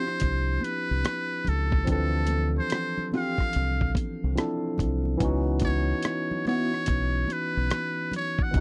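R&B with a neo-soul lean, this late-night, sultry excerpt sits at 72 BPM with a swung sixteenth feel, as a buzzy, breathy muted trumpet carries the melody over a barky, lightly overdriven tine electric piano, a mellow chorused electric guitar that drops out at 6.7 seconds, a gritty, thumpy sampler-style drum kit with hi-hat and rim click, a round, punchy dub bass, and very quiet high-tuned congas, all captured in a dry, close 1970s-style studio sound as the chords move from Dm11 to C#m11.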